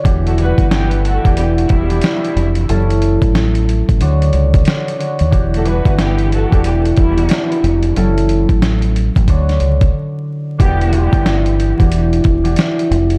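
Dark and gritty, this boom-bap hip-hop excerpt sets a ringing, thumb-plucked concert harp through cassette-tape filtering over a compressed, thumpy sampler-style drum kit and a round, deep fingered electric bass, while a soft-attack, sul tasto string section adds bowed stabs with tape echo until 11.1 seconds, all steeped in an echo-heavy mix with vinyl crackle and a brief break at 9.9 seconds.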